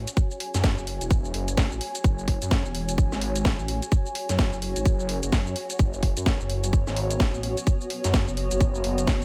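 Swaggering and aggressive, this short bass house excerpt at 128 BPM with a 16th-note swing pairs a swirling, saturated detuned saw bass, phased and pumping, with a cloudy granular pad drifting behind it, while a tape-tinged garage kit of hi-hat, shaker and cracking snare comes in at 0.1 seconds and a tight, up-front electronic kick follows at 0.2 seconds, all over F#5 moving to B5/F# at 5.8 seconds in a light digital ambience.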